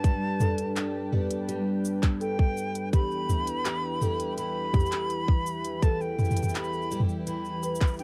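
Folktronica at 83 BPM in a straight 4/4, this delicate, warm passage is cut from a longer piece and moves from G to E minor at 2.9 seconds. A bright silver concert flute carries the melody between G5 and B5, its airy, vibrato-laden tone slightly unsteady and trailed by tape echo. Beneath it, a picked twelve-string acoustic guitar shimmers with octave-doubled arpeggios and audible finger squeak, while a warbling, nostalgic tape-like pad holds sustained chords with chorus and its own reverb. A woody marimba played with soft mallets enters at 0.4 seconds with a round, mellow second line, also touched by tape echo. Up front sit an overdriven electronic kick, tight and produced, and an organic electronic kit of handclaps, crisp hi-hat, shaker and toms, both re-recorded in a large room, all within a dry, close 1970s-style studio sound with light reverb.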